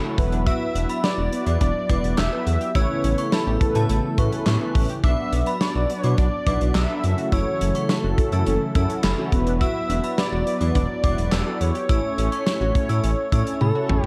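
A thick, detuned unison lead carries the melody with tape echo from the start, alongside a high, inharmonic FM chime line and joined by nasal, chorused synth brass, a bold filter-swelling pad in the background and a very quiet, evolving analog pluck spinning arpeggios. From 0.2 seconds a smooth, up-front sawtooth bass and a punchy modern studio drum kit with handclaps, hi-hat and toms drive this cool, nocturnal synth-pop passage over chords moving from Esus2 through Bm and F#m7. The dark production sits in light small-room reverb, and a drum fill at 13.6 seconds closes the cut.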